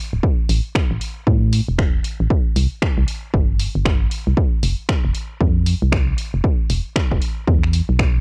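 A hollow, dark FM bass with an organ-like tone opens this deep, smooth deep house cut at 116 BPM in A minor, its fast-attack, decaying notes pumping under sidechain and sitting up front between D1 and A2. A punchy electronic kick arrives at 0.2 s with tape-warmed weight, and at 0.5 s a quieter analog drum machine adds finger snaps and hi-hat, both drum parts carrying a cassette tape colour, all over a 16th-note swing. The whole passage, taken from a longer piece, sits in a digital ambience as a home recording on cassette.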